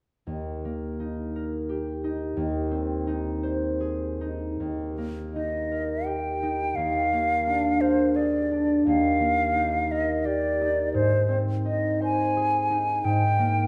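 A hollow, pure-toned concert flute carries the melody in this tender romantic classical duo, entering at 5.3 seconds with close-miked, tongued notes and vibrato that sit up front. Beneath it, a concert harp provides the accompaniment from 0.3 seconds, its thumb-plucked strings ringing with a warm acoustic tone across a span from low Eb2 up to C5. The music moves in an unhurried 3/4 at roughly 71 to 90 BPM with a flexible rubato feel, settled in Eb major and tuned to A4 = 441 Hz. The harp opens alone before the piece shifts into a new section, and the harmony moves gently between Eb, Ab and Bb7 colours before both instruments stop at 13.7 seconds. A moderate recital hall reverb lends the pair a natural sense of space in this passage cut from a longer piece.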